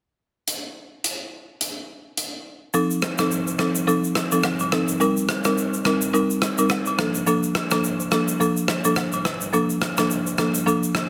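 A swung sixteenth-note groove at 106 BPM in 4/4 drives this sunny, romantic afrobeats excerpt in Bb major. A big rock drum kit opens alone at 0.5 seconds, up front with a big-room acoustic sound, working hi-hat, rim click and shaker, with a touch of soft clipping on the snare. At 2.7 seconds a buzzing marimba played with medium mallets joins as accompaniment, its hardwood bars sounding woody, dry and up front between F3 and Bb4 as the harmony moves through F7, Cm7 and Bbmaj7. Agogo bells and woodblock enter at the same moment, along with maracas and a group handclap, kept close and dry in the background. A moderate small-room reverb surrounds the mix, and the master is dense and heavily limited in a modern style.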